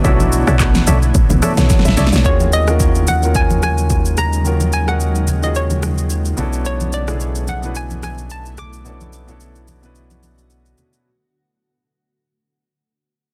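Deep and late-night, this amapiano excerpt at 109 BPM with a 16th-note swing opens on an intimate grand piano with audible action noise, a blurred granular pad pumping behind it, mellow chorused organ stabs and a punchy, woody log drum bass that stop by 2.2 seconds after a drum fill, when a round, dark analog bass and a bouncy, warbling square-wave pluck with chorus and delay take over above an overdriven, up-front deep house kit and close, dry congas, moving from Bm11 to Ebm11 and back as the track fades out in a dense, heavily limited master.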